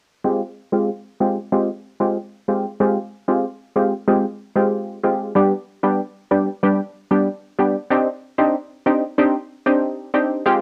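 Hypnotic and sultry, this dancehall excerpt in F dorian moves at 94 BPM in a straight 4/4, carried entirely by a punchy, sawtooth synth chord stab with a fast attack and decaying tail, treated with chorus and a low-pass filter sweep that runs from 0.2 to 10.6 seconds, sitting bright and up front over chords of Fmadd9, G and Cmadd9 in a moderate studio reverb, captured as a home cassette recording.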